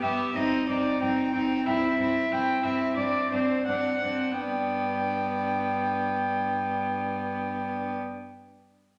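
A quick, graceful and lively classical-period string quartet movement in 2/4, cut from a longer piece, in which a dark, nasal first violin carries the melody up front over a second violin's rich second line, a viola accompaniment with light vibrato and a close cello bass, each part bowed by a single player with period-style gut strings and a reedy edge, slowing down from 1.0 to 4.4 seconds as a C minor chord over G gives way to a G chord at 4.4 seconds, all in the wet reverb of a recital hall.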